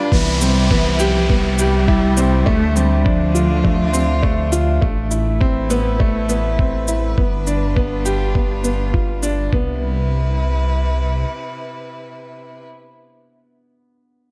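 A bright, woody upright piano drives this hopeful, luminous piece of piano and strings electronica, playing an up-front riff with short sustain and delay from the opening until 14.3 seconds. Alongside it, a clear, focused string quartet holds bowed sustained chords with vibrato and sidechain pumping, while a distant, dark solo cello offers a brief melody that ends at 4.5 seconds. A deep, rumbling detuned saw bass sits up front with tube saturation, sidechain pumping and a filter sweep through the first section. A muffled, thumpy sampler-style kick and an electronic shaker re-recorded in a large room carry the straight 4/4 at 102 BPM, and an electronic downlifter colors the opening seconds. The harmony moves through Cmaj7, Dm7, Amadd9 and G7 in C major before returning to Cmaj7 as a short second section begins at 9.5 seconds, all within a light reverb, in a passage cut from a longer piece.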